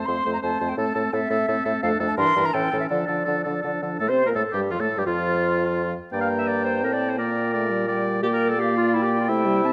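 An airy, expressive concert flute carries the melody with vibrato through this cheerful, graceful excerpt from a quick classical-period movement for wind quintet in triple time, with an oboe in light vibrato adding a second line. A warm French horn and a punchy, roomy clarinet fill in the accompaniment, while a mellow, soft-attacked bassoon sits up front on the bass from 0.1 s. Close, detailed microphones catch the quintet in a moderate concert hall reverb, and the music moves into a new section at 4.0 s.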